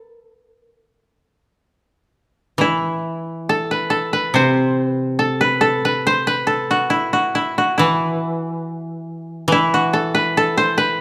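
A mellow koto carries the melody from the very start, playing alone in a middle register until 2.6 seconds, when a second koto joins beneath it with a low accompaniment. This is Japanese traditional chamber music with a solitary, meditative mood, unfolding in a free, rubato feel that lets each phrase breathe. Both kotos are plucked with fingerpicks and sound woody, dry and up front, with the lower part lending a warm foundation and sitting slightly behind the lead in level. A moderate recital hall reverb surrounds the pair, giving the sparse lines a gentle sense of space. The passage is cut from a longer piece and runs to 11.0 seconds, ending with both instruments still sounding together.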